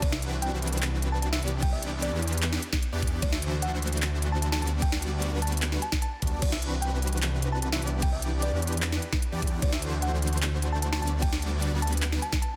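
A thick, saturated detuned saw bass sits up front in this lush, playful future bass excerpt at 150 BPM in G major, pumping with sidechain beneath huge, bright supersaw chords that cycle through Cmaj9#11, Em7, D9 and Gmaj7/D over a half-time feel. A knocking electronic kick and a trap kit with a woody snare, crisp hi-hats, handclaps and crash cymbal drive the groove. In the background, a sparkling, bell-like FM electric piano carries the melody with chorus and tape echo, all within light reverb and a dense, heavily limited modern master.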